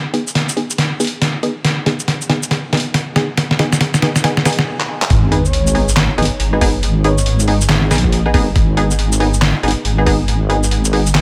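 Deep dubstep with a heavy, meditative half-time swing, this excerpt opens with muted, filtered dub chord stabs under a sweep, a gritty, pitched-down sampler-style kit of snare, handclaps, hi-hat and shaker up front, and a thumpy kick in the background, building through drum fills and a brief stop before the drop at 5.1 seconds unleashes a dark, detuned wobble bass and a sub drop, while a breathy, flute-like lead with vibrato and dub echo drifts in at 5.3 seconds.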